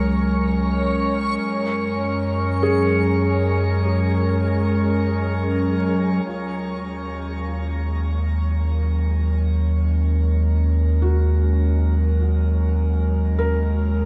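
A dark, soaking production with a long shimmer reverb frames this luminous, weightless ambient fragment, cut from a longer piece and moving at a slow 50 BPM in 4/4. A warbly, tape-like pad with a nostalgic lo-fi character holds sustained chords up front through chorus and its own reverb, while a round sine sub bass sits deep beneath it. A reversed, swelling texture, granular and detuned, drifts dreamily above during the opening section and stops at 6.3 seconds. A felt-muted upright piano enters at 2.6 seconds with soft, intimate arpeggios, its thin felt and audible action noise set in a diffuse ambient delay. From 6.3 seconds both the pad and the piano fade in as the harmony moves from C#sus4 and F# to D#m7.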